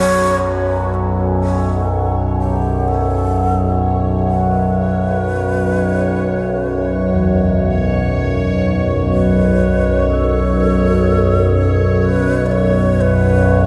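An up-front, resonant drone with moving overtones anchors this free-time dark ambient excerpt, its low sustained tone sitting under a bright chorus sheen inside a cavernous cathedral reverb. A bubbling, detuned synth texture with random filter steps and a breathy, unsteady shakuhachi, whose vibrato and tongued chiff sound through a delay, both fade in from 0.4 seconds over a Bsus2 harmony. From 7.1 to 13.0 seconds, very quiet bronze gongs with a round, beating tone add arpeggios to the desolate atmosphere.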